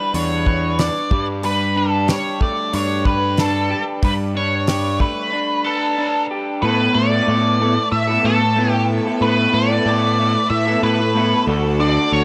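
Psychedelic rock at 93 BPM with a dark, mysterious mood, cut from a longer piece, in which an up-front octave-fuzz lead guitar with wah and tape echo carries the melody over a slightly broken-up, lo-fi riff from an electric guitar through a small old amp with phaser and a warm, overdriven fuzz picked electric bass, while a dry, damped 70s drum kit with a fat snare and tight kick plays until 5.2 s and a lush vintage string machine with ensemble chorus enters in the background at 6.6 s with sustained chords as the harmony moves from Em7 and Gadd9 to Asus2 and D, set in light studio reverb.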